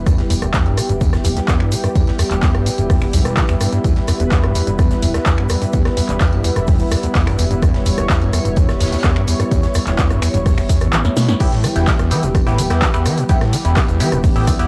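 A lush, warbling unison pad holding chorused chords and a round, deep analog bass, both pumping to the sidechain, open this driving, hypnotic acid house excerpt at 127 BPM in E dorian, soon joined by a squelchy, gritty overdriven acid bass riff with its own sidechain pump, a tape-warm electronic kick, a punchy analog drum machine with snare, handclaps, finger snaps, rim clicks, hi-hat and crash, a very quiet big rock drum kit with hi-hat, snare and tambourine, and a grainy egg shaker in the background, until the kick drops out at 10.9 s under a drum fill and a nasal, band-passed chord stab with phaser and analog delay arrives at 11.4 s for the drop, all captured as a dry home cassette recording.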